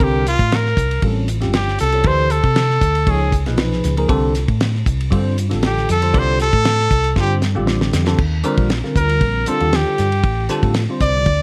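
A brilliant, forceful trumpet opens this funky, slick stretch of electric jazz fusion, soloing from the very start in a jazz style with light vibrato and a smooth top, set up front in a plate reverb. Beneath it, a bell-like tine electric piano plays clean, direct chords coloured by phaser and plate reverb, moving through Csus2, A7alt, Dsus2 and Db7 before shifting to Ebmaj9 at 8.2 seconds and closing on F69/A. A hollow-body short-scale electric bass, played with the fingers, gives a dark, round, amped low end with a punchy attack. The damped 70s drum kit sounds dry and mid-forward, with a fat snare, a tight kick, hi-hat, ride and crash, and it plays a fill from 7.2 to 8.2 seconds. The production is dark and warm with light reverb, and the passage is cut from a longer piece.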